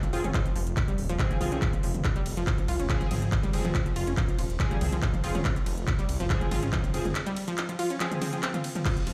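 Driving peak-time techno in F minor at 141 BPM, this short cut from a longer piece feels hypnotic and relentless, sitting on a single Fm chord in straight 4/4. A punchy, up-front electronic kick drives from 0.3 seconds, while a techno drum kit of crash and ride cymbals, handclaps, toms and smooth hats plays throughout, with sidechain pumping on its hats, toms and cymbals. Underneath, a thick, menacing detuned saw bass growls low and saturated with a beating edge, pumping with sidechain compression. An analog pluck plays the round, decaying riff, washed in chorus and digital delay, while a sync-sweep polysynth adds edgy stabs with a nasal sweep that drop out at 8.4 seconds. The mix sounds as though played on a big sound system in a bare room, with light reverb, digital ambience and a large studio reverb around it.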